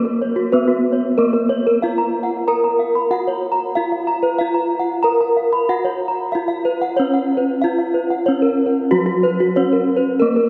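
Drenched in a long cathedral reverb from a church or concert hall, this brilliant, shimmering gamelan passage in Bb pelog moves at 93 BPM in a straight 4/4, with one bronze metallophone struck by a wooden mallet carrying a ringing, mid-forward melody while a second, played with a horn mallet, spins dark, smooth arpeggios, both up front and beating through their paired tuning across the full 10.5 seconds.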